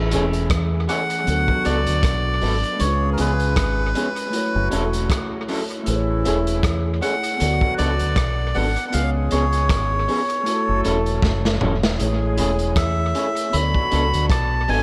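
A reedy, breathy melodica carries the melody up front in this romantic, smooth lovers rock reggae piece, entering at 0.9 seconds with dub echo trailing its nasal, plastic-cased tone. Beneath it, a deep dub fingered electric bass sits round and punchy in the low end, while a crunchy breakbeat drum kit, saturated and gritty with a tight kick and a rolled-off top, drives a swung groove through gated reverb and dub echo. A mellow tine electric piano supplies clean accompaniment with its own echo, and an electric guitar through a small old amp adds dark, slightly broken-up, lo-fi stabs that also trail into echo. A mellow, tight horn section with octave doubling plays a second line in the background. The chords cycle through Amaj7, D6, C#7 and F#m7 in a small room with light reverb, and a drum fill arrives at 11.2 seconds in this excerpt cut from a longer piece.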